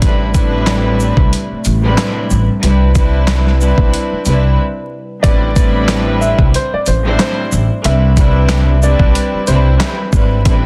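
A gritty, compressed sampler-style drum kit drives this moody, tough boom-bap hip-hop excerpt at 92 BPM in A minor, its thumpy kick, snare, hi-hat, handclaps and shaker swung on the sixteenths alongside a woody pizzicato upright bass, both up front. Behind them, a distant bowed chamber string section with light vibrato and a reedy gut-string tone carries the Am11 and Cmaj7 chords through a cassette-tape haze, while a hollow, flute-like pad sits in the background until 5.2 s. After a brief break, a worn, slightly detuned upright piano takes the melody with tape echo, all set in a dense, heavily limited master dusted with vinyl crackle.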